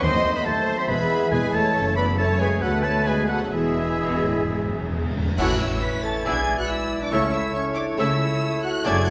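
A dark, distant violin section carries the melody in this graceful, lively fragment of a dramatic romantic orchestral movement, its bowed vibrato lush and expressive under rubato phrasing, while a clear oboe, an airy flute section, a warm clarinet and a second, smooth-topped violin section weave supporting lines. Intense violas, rich, focused cellos and double basses fill the accompaniment and bass beneath mellow sustained chords from French horns and very quiet trombones, with a bright, ringing harp adding arpeggios. Cymbal swell, clash cymbals and bass drum enter at 1.8 seconds, timpani play a fill from 3.5 seconds, and at 5.4 seconds a present bassoon joins as roomy trumpet stabs mark a band accent, the orchestra set in a reverberant scoring-stage space.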